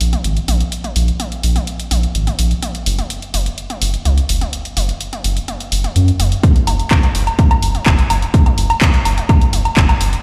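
A punchy, overdriven electronic kick drum bursts up front at 6.4 s and drives this dark, cinematic melodic techno build-up, cut from a longer piece. Beneath it, a round, deep analog bass with a wave-folded edge, fast attack and sustained notes pumps against the sidechain. A layered house kit of handclaps, bright hi-hats, toms and woodblock is overdriven and high-pass filtered, all heard through a big sound system in a bare room with a large studio reverb.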